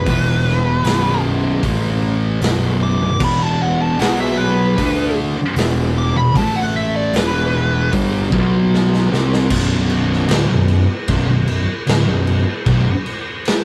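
A wah-soaked, compressed fuzz lead guitar opens this ominous, hypnotic stoner and doom metal excerpt at 76 BPM in B minor, riding over two dark, picked fuzz rhythm guitars (one up front, one in the background), a growly overdriven bass and a gritty garage drum kit with a punchy kick in a pumping stone room; the lead stops at 7.9 s, a drum fill arrives at 8.7 s, and the rhythm guitars cut out at 12.9 s, all with a rough rehearsal-room sound.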